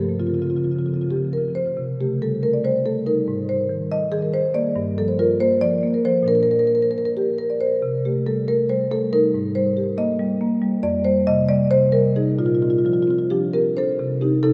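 Set in 7/8 with a rubato feel, this flowing, hypnotic contemporary classical piece moves its eighth notes at 257 to 286 BPM. A solo marimba with soft mallets carries everything from F2 up to Eb5, its padauk bars giving a woody, mellow, round voice that sits up front. The instrument is bathed in a wet cathedral reverb with a long 5.3-second decay. After a brief opening on Dbmaj7, a longer passage begins at 1.8 s and cycles through Cm6, Abmaj9, Gm7 and Bb in C dorian. It later turns through Fsus2 and Bbadd9 before settling back on Cm6 as this cut from a longer work ends at 14.5 s.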